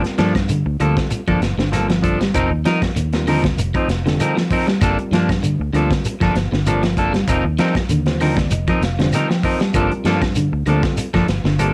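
A crunchy breakbeat kit sets a swung 97 BPM groove in 4/4, its tight kick, medium-tuned snare and hi-hat sounding saturated and gritty with a rolled-off top, up front in a small acoustic room. This is a defiant, funky afrobeat excerpt in G minor, cut from a longer piece, moving between Gm9 and F7sus4. A fingered electric bass sits underneath with a round, foam-muted tone, direct and amped. Two picked electric guitars share the middle: a clean one playing stabs up front, and one at the edge of break-up playing arpeggios from 0.2 s. A grainy shekere joins at 0.2 s and woody claves follow at 0.4 s, the claves close and dry but set in the background. Further back, a worn, slightly out-of-tune tine electric piano, lightly overdriven through its built-in speakers, plays a fill from 7.9 s, and the whole recording carries the character of a home cassette recording with moderate studio reverb.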